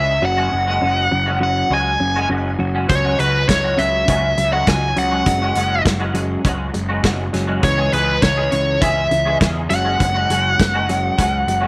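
A biting, overdriven lead guitar carries the melody through tape echo over a compressed, fingered clean electric guitar riff, a twangy chorused riff with its own echo and a punchy fuzz bass, all heard from the very start of this restless, moody indie rock excerpt, until a loose, up-front drum kit with a tight kick and medium-tuned snare joins at 2.9 s in a small, pumping room while the harmony shifts between suspended chords and C#m.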